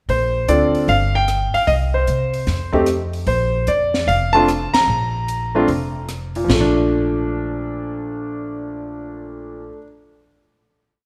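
Relaxed and sophisticated, this brief jazz piano trio piece swings at 149 BPM in Bb major, with a clear concert grand piano stating a motif-based melody in period phrases over syncopated comping and rootless voicings, while a woody pizzicato upright bass plays a two-feel line up front. A compact cocktail drum kit, dark and smooth with a high-tuned snare and punchy kick, keeps time on the hi-hat with sticks until 6.6 seconds, and the band hits an accent at 4.7 seconds. The piece closes on a held Bbmaj7 from 6.5 seconds, ringing in the moderate reverb of a concert hall.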